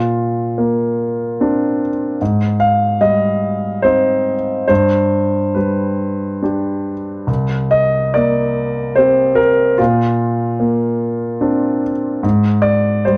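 Reflective and intimate, this excerpt of neoclassical minimalist piano moves at 73 BPM in a rubato 3/4, its tuning set slightly high at A4 = 443 Hz. A solo grand piano, up front and natural with audible action noise, plays alone for the full 13.2 seconds across a range from C2 to F5, moving through chords such as Bbadd9, Abmaj7 and G before returning to Bbadd9 and settling on Ab. Moderate studio reverb gives the sense of a single room, keeping the sound close.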